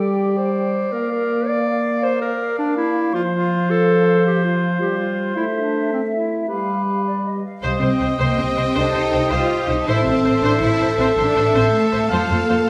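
The rhythm rolls in a lilting 12/8 at 107 BPM, counted in dotted quarters with a straight feel, giving this cinematic passage in G dorian a swashbuckling, determined drive, cut from a longer piece. It opens with woodwinds weaving second lines over dark, distant French horns holding sustained chords: a clear, soft-attacked clarinet, a mellow cor anglais with a smooth top, and an airy, tongued flute ensemble that sounds far off and drops out at 7.6 seconds. At that point the strings arrive together, with a focused, close studio violin section adding its own second line, a smooth studio viola section in accompaniment, and a lush symphonic cello section joined by an intense, clear double bass section underneath. The melody itself comes late, at 8.8 seconds, carried by a chamber violin section with vibrato that sits in the background of the texture. The harmony moves from G through Bb, F, Am and G7 before settling toward Cm, Am and F, and a wet recital hall reverb gives the whole ensemble a roomy, concert-hall glow.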